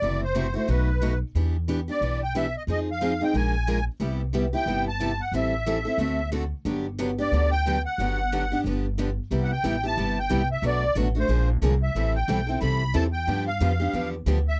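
A reedy, shimmering musette accordion opens this playful, charming piece of acoustic string swing, carrying the melody up front alongside a bright, freshly strung steel-string guitar picking the accompaniment and a thumpy, gut-strung upright bass played pizzicato. The tempo is a brisk 181 BPM in 4/4 with a lilting swing on the eighth notes, and the music sits in G major through a jazz progression of seventh chords. At 4.0 s a boxy archtop guitar with old strings joins in the background, adding a second picked accompaniment behind the brighter guitar. At 9.3 s the piece moves into C major for a new section, with richer ninth chords colouring the harmony as the accordion keeps the tune. The sound is dry and close, like a 1970s studio session, with the bass, accordion and steel-string guitar all sitting near the listener. This is a short cut from a longer performance.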